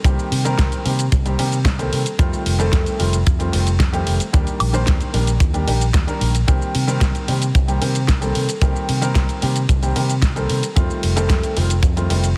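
The fingered electric bass with an envelope filter anchors this sleek, cosmic nu-disco excerpt in C dorian at 112 BPM, its bright, amped tone pumping under an up-front, tight acoustic kick and a layered electronic pop kit of fat snare, hi-hat, ride, shaker and woodblock, while a clear but worn concert grand piano with vintage 12-bit grit and slapback echo cycles through Cm7, F9 and Ebmaj7 in a small room with a heavily compressed radio sound.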